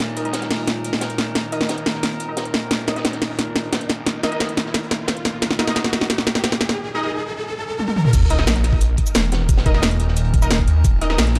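Aggressive and dark, this short cut of technical drum and bass runs at 177 BPM in a straight 4/4, spending its first 8.1 seconds in a build-up before dropping hard. An eerie, metallic drone of inharmonic sustained chords hangs overhead with chorus and its own reverb, while a thick, swirling detuned saw bass sits low in the background under a phaser, both pumping against the sidechain. Up front, an electronic kit with a cracking snare and metallic hats plays fills through most of the build, joined by a very quiet, gritty breakbeat kit with a high-tuned snare and rolled-off top. A bold, punchy orchestra-hit-like stab carries reverb and digital delay as a filter sweep runs across it, and a background riser climbs until the drop at 8.1 seconds. There the impact lands and a knocking, tape-warm kick enters, driving the section in a dark, lightly reverberant production.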